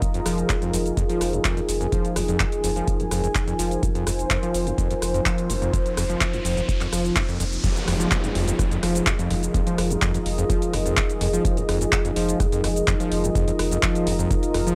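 A dry, gritty hardware recording of driving, hypnotic acid house cut from a longer piece: a squelchy, distorted acid bass riff with tape echo rides over a thick, saturated sub bass and a deep analog kick; an electro drum machine adds metallic hats, handclaps, rim clicks, shaker and crash cymbal; a detuned sawtooth pad holds moody sustained chords while a mellow, evolving ambient pad hovers higher, both pumping with sidechain; and a riser and downlifter enter at 5.2 s ahead of the drop at 7.6 s.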